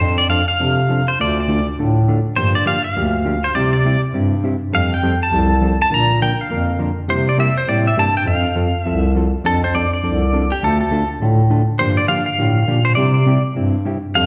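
A swinging 4/4 at 204 BPM drives this cheerful western swing excerpt in F major, where a bright, twangy pedal steel guitar carries the melody up front with fingerpicked slides, volume swells and slapback echo, a dark, clean hollow-body jazz guitar comps underneath with its own slapback, and a mellow bass clarinet with vibrato and a soft attack plays the bass line, all heard through a live club PA with recital hall reverb as the chords cycle from F6 through Dm, Gm7 and C.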